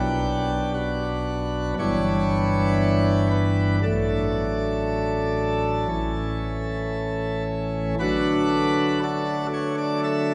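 Reverent and majestic, this short passage from a longer classical work is a chorale-style piece for solo pipe organ. The organ plays a full plenum with mixtures, giving a brilliant, baroque-voiced sound, and a touch of chiff marks the start of its notes. The music moves in a flexible, rubato 4/4, spanning from a deep G1 up to E5. Its harmony passes from Bm through Em7/G and D/A to A before resolving on D at 8.0 seconds. A lingering church reverb of about 3.1 seconds surrounds the instrument, and the listener seems placed further back in the room, so each chord blooms into the space.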